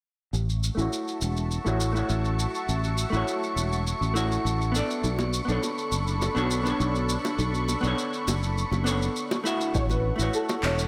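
A growly, up-front fretless electric bass with ensemble chorus and a filter sweep anchors this blissful, smooth sunset chillout excerpt at 102 BPM in A major, joined by a dark, clean hollow-body jazz guitar that also carries a filter sweep along with low-pass filtering and delay, a thick, detuned sawtooth pad with chorus and phaser, an airy, wind-like noise texture in the background, electronic shaker and handclaps with gated reverb, round, low-tuned bongos from 5.2 s, and, at 9.7 s, a mellow, boxy concert grand piano melody over a punchy, overdriven electronic kick, set in a bright 1980s-style digital production with lush hall reverb.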